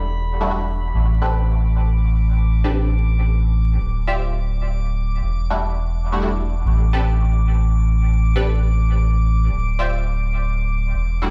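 Raw and dark, this short excerpt of drum and bass drifts in free time, anchored by a thick, saturated sub bass sitting up front while a faint, glassy texture of drifting overtones hovers high above with chorus and its own reverb. From 0.4 seconds a nasal, band-passed sawtooth chord stab enters with a filter sweep, phaser, ensemble chorus and dub echo, moving between Em11 and Asus4 with chordless stretches in between. The sound is dry yet heard as if on a big sound system in a bare room, with large studio reverb and vinyl crackle.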